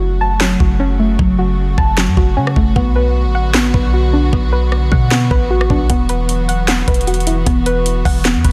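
A half-time 4/4 groove at 153 BPM drives this menacing trap cut in F# minor, with the electronic drum kit arriving at 0.4 s up front with a knocking kick, sharp snare, metallic hats, handclaps and rim clicks over a deep, boomy 808-style bass. A soft, round pluck with a wave-folded edge spins arpeggios through chorus and tape echo, while a dark chamber string section holds intimate, sul tasto chords with light vibrato underneath. The harmony moves from F#m to Bm to Esus2 inside a dense, heavily limited modern master with digital ambience.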